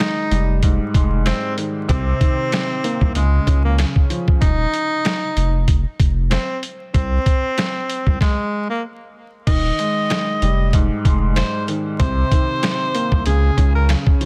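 A swung, head-nodding boom-bap groove drives this tough, gritty hip-hop cut. It pairs a pitched-down, compressed sampler kit with a thumpy kick and medium-tuned snare, and a thick, saturated sub bass, both sitting forward under a dense master with vinyl crackle and a dry room. A breathy, whispered tenor saxophone carries the jazz-style lead with vibrato and scooped notes through tape echo. A worn, woody, slightly detuned upright piano plays under it from the start, drops out at 4.4 seconds and returns at 9.5 seconds, after a brief stop in the beat from 8.2 seconds.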